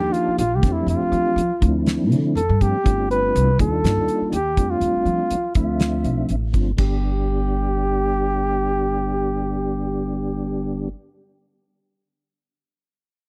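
A veiled, bucket-muted trumpet carries the jazz-style melody up front with light vibrato and a slapback echo in this slick, soaring electric jazz fusion excerpt in G mixolydian at 122 BPM, swinging gently on the 16ths over chords such as Ebmaj9, F6, Dm9 and G7sus4. A woody, growly pizzicato upright bass and a soft, flute-like tonewheel organ with chorus vibrato, key click and a stopped rotary speaker fill out the harmony. A damped 70s drum kit with a fat snare, tight kick and dark cymbals drives the groove until 6.9 s, as the music moves onto a G chord, all captured in a dry, close 1970s-style studio sound.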